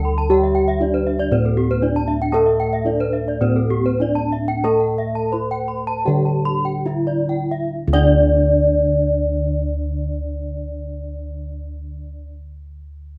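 Balinese gamelan in D slendro opens with nearly everything sounding at once: bronze metallophones and bossed gongs ring out together in a shimmering, ceremonial mood, the tempo moving between 65 and 118 BPM in a straight 4/4. The melody sits on a wooden-mallet metallophone in paired tuning, its beating shimmer softened by plate reverb, while a lower horn-mallet metallophone plays a bright accompaniment. Above them, two metallophones spin arpeggios: one has a boxy, small-room colour with plate reverb, and the other, joining at 0.1 s, is close-miked, full and up front. The round, beating bossed gongs carry the bass and are the loudest part. The music slows between 2.3 and 7.7 seconds, and a new section begins at 7.7 seconds. The whole has a rough home-demo quality with moderate studio reverb, and it is cut from a longer piece.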